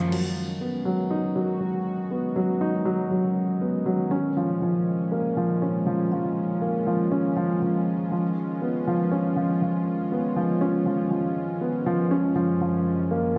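This is a cinematic, hypnotic electronica excerpt in a steady straight four, cut from a longer piece and running about 13.4 seconds. A dark concert grand piano sits up front, repeating a riff with a mellow, smooth, vintage character, a deep low end and short sustain, its sound softened by a low-pass filter and trailed by tape echo. Beneath it, a thick unison pad built from detuned sawtooth and square waves holds sustained chords, fading in with a slow attack and lingering on a long release, shimmering with chorus and sitting lower in the mix than the piano. The harmony moves from G#m7 to A#m7 at 4.1 seconds, C#7 at 8.1 seconds and F#maj7 near the close. A recital hall reverb with a 1.8-second decay bathes the whole recording in a spacious, wet ambience.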